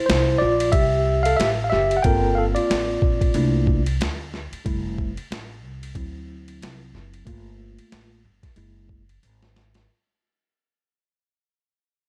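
Jazz-hop with a relaxed, smooth feel and swung sixteenths, cut from a longer piece and fading out across its whole length. A clean tine electric piano, played through its built-in speakers and sitting up front, solos over a chord sequence opening on Am7 until 9.0 s. Beneath it are a woody, steel-strung pizzicato upright bass and a compressed, gritty, pitched-down boom bap kit with a thumpy kick, high-tuned snare, hi-hat and ride, tape-warm and re-recorded in a small room, with a drum fill at 9.2 s, all set in a dark production with light reverb.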